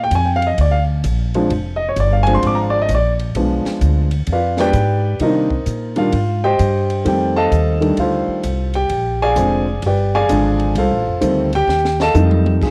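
Captured as a home recording on cassette, this swinging jazz piano trio sits in light reverb and studio ambience, with the piano and bass up front. At 130 BPM in 4/4 with a swing feel on the eighth notes, the fragment of a longer piece moves in B-flat mixolydian through Bb7, G7b9, Cm7 and F7. The grand piano carries the melody as a solo from the very start, its intimate, natural tone marked by audible action noise as it ranges from D3 to D6. Underneath, the pizzicato upright bass with steel strings gives a woody, warm foundation from F1 to C3. The compact cocktail kit, dry and lower in the mix with a cassette tape colour, offers dark cymbals, a high-tuned snare and a punchy kick, and rounds things off with a drum fill at 11.7 seconds.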